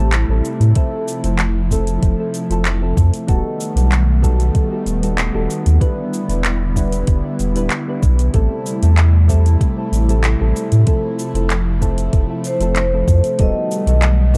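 A round, up-front sub bass anchors this smooth, wistful sunset chillout fragment, joined by soft electric-piano-like synth keys with chorus, phaser and delay, a breathy detuned pad, a produced R&B kit with cabasa, handclaps and metallic hi-hat, a tape-warm electronic kick from 0.8 seconds, and a ringing soft-mallet vibraphone with tape echo arriving at 12.5 seconds over a dark, dry mix cycling through Am7, Fmaj7, B7b13/D# and Em7.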